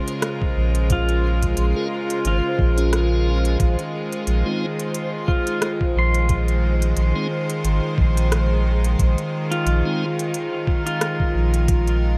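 Ambient dub at 89 BPM with a gentle 16th-note swing, this meditative, deep excerpt cut from a longer piece rests on a round, up-front sub bass and a muffled, thumpy kick beneath crisp overdriven hi-hats and rim clicks, while earthy bowed chamber strings hold sustained chords over Bbm7 and Fm7, a clean pedal steel guitar played with fingerpicks and slide spins arpeggios through dub echo, a granular reversed texture shimmers in the background, and a piping tonewheel organ with key click, slow rotary speaker and dub echo adds faint stabs from 1.8 to 10.1 seconds.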